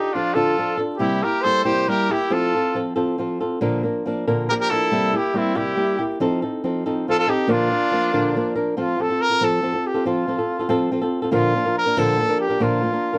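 Set in 6/8 at 93 dotted-quarter beats per minute with a straight feel, this festive, romantic mariachi passage is cut from a longer piece of Mexican folk music. A punchy, clear trumpet carries the melody in classical style with light vibrato, and its tone sits up front in the mix. A bright second trumpet plays a supporting line with vibrato until 8.6 s. Both horns carry a distant, roomy character. Beneath them, a fingerpicked acoustic flamenco guitar provides warm accompaniment throughout, moving through Dm, C7, F and Bb in Bb major before the music shifts to F major at 8.8 s. Light reverb and close, detailed microphones give the recording an intimate clarity.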